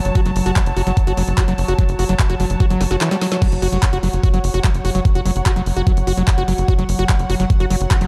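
Alien and driving, this psychedelic trance excerpt at 147 BPM in F# minor pairs an up-front, knocking overdriven kick and a drum and bass kit with a woody snare, bright hats, handclaps, crash and a drum fill at 2.8 seconds, with a tight, nasal sequencer bass, a squelchy, gritty acid bass riff with delay and sidechain pumping, a morphing, warbling wavetable pad on a sustained F#5 chord, and a dark, intimate chamber string section bowed sul tasto, all in a dark, lightly reverberant production.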